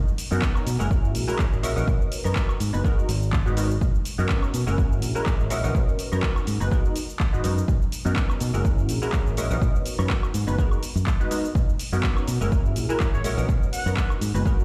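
Riding a 124 BPM 4/4 pulse with a light 16th-note swing, this sunny, funky filtered disco house excerpt sets an up-front, tape-warm electronic kick and a punchy analog drum machine of handclaps, hi-hat, shaker and woodblock beneath a direct fingered electric bass cycling through F#7, Bmaj7 and G#m9, while a detuned sawtooth polysynth comp with chorus, phaser and a filter sweep pumps against the sidechain, and a tight vintage trumpet section with light vibrato and delay slips in at 13.1 seconds, all heard through a big sound system in a bare stone room.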